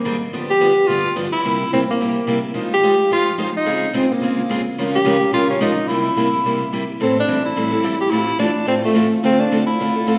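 A warm, close-miked tenor saxophone with light vibrato carries a fiery, virtuosic jazz melody over bright, fresh-stringed picked steel-string acoustic guitar accompaniment, both up front in a swinging fast 4/4 and bathed in the wet reverb of a recital hall, with the harmony moving from G7 through Dbmaj7 before settling onto Am7 at 7.0 s in this short fragment cut from a longer piece.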